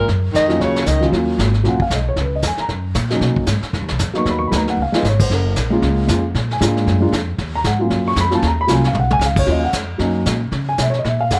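This moody small-group swing and bop excerpt, cut from a longer piece, opens with a clear, close-miked alto saxophone carrying the melody in its upper register over a breathy baritone saxophone on a low second line. Both horns play with light vibrato, the alto scooping into its notes and touched by plate reverb, but they drop out after 1.1 seconds. A woody pizzicato upright bass on steel strings runs underneath from the start, and a vintage brush drum kit follows almost at once, with dark cymbals, a medium-tuned snare and a punchy kick. A dark, mellow baby grand piano enters at 0.5 seconds and sits up front as accompaniment, intimate and natural, with short sustain and audible action noise. The drums add fills at 4.8 and 8.9 seconds, and the whole recording has a light reverb and a dark, warm, swinging character.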